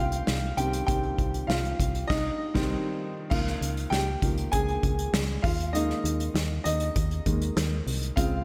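Piano-driven pop at 99 BPM in 4/4, dramatic and bittersweet, this short cut from a longer piece moves from Cm through Db6 to Ebsus4 and is tuned to A4 = 438 Hz. A woody, boxy upright piano with short sustain and slapback echo sits up front and carries the lead throughout. Beneath it play a round, dark FM bass with a fast, decaying attack and an up-front acoustic kit of punchy kick, medium-tuned snare, hi-hat and crash, played with bundle sticks, with a band accent from 2.1 seconds leading into the second section at 3.3 seconds, all bathed in a lush hall reverb that lends a big arena sound.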